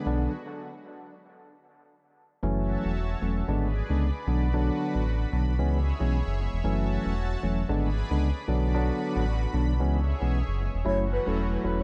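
A clean tine electric piano with dub echo and a lush, detuned chorused pad open this sultry, smooth afrobeats clip with a swung 16th-note feel, joined at once by a deep, up-front sub bass with octave, and after a stop from 0.3 to 2.4 seconds the groove settles into minor-seventh and diminished changes in a dry, echo-heavy mix until a breathy, flute-like synth lead with chorus, phaser, vibrato and dub echo slips in at 10.9 seconds.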